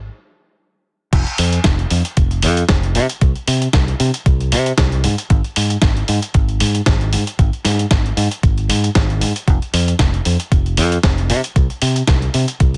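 A bright, growly fingered electric bass opens this sunny, feel-good nu-disco excerpt in Ab major at 115 BPM with a lightly swung 16th-note feel, playing up front and direct through a brief stop before the drop at 1.1 seconds brings in a thumpy, tape-warm electronic kick and a gritty, compressed soul sampler-style kit with a fat snare, hi-hat and crash set up front in a large-room sound, all kept fairly dry with little reverb.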